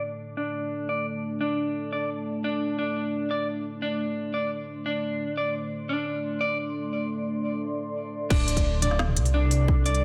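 A deep, moody ambient pad with chorus, built-in reverb and sidechain pumping sustains dark chords under a clean, picked electric guitar arpeggiating through delay, both filter-sweeping for 8.3 seconds in this tense half-time drum and bass excerpt at 174 BPM, until the drop brings in a rumbling, detuned saw bass, a hard-clipped kick and an electronic kit with woody snare, smooth hats, toms and crash in light digital ambience.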